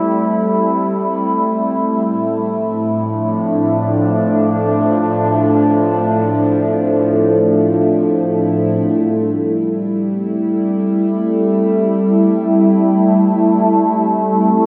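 A warbly, tape-like pad sits up front, holding mellow, detuned sustained chords in A minor that drift from Am7 to Dm7/A at 2.1 seconds and back to Am7 at 8.8 seconds, its slow attacks and long releases coloured by chorus and phaser. Alongside it, a resonant drone with moving overtones also sits up front and sustains throughout, while a lush hall reverb and the worn, wavering pitch of old cassette tape give this free-time ambient excerpt a melancholic yet serene, nostalgic feel.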